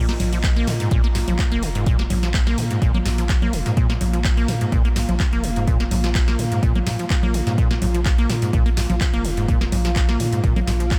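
Lightly reverberant and driving, this trippy acid house excerpt at 126 BPM sets a punchy electronic kick and a booming, overdriven analog drum machine of congas, handclaps, crisp snare and metallic hi-hats against a deep, round analog bass, while a squelchy, resonant sawtooth acid riff with tube saturation, chorus and diffuse delay pumps over a warbling, detuned, lo-fi pad that feels nostalgic and mellow.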